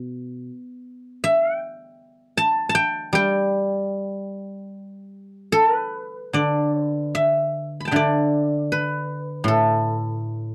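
Pastoral and serene, this brief fragment of a longer Chinese traditional piece features a solo guzheng, played with fingerpicks, whose silvery, ringing tone sits up front in a dry, close 1970s-style studio sound as it moves freely in rubato across a range from A2 to B5, shifting to a new section at 6.4 seconds.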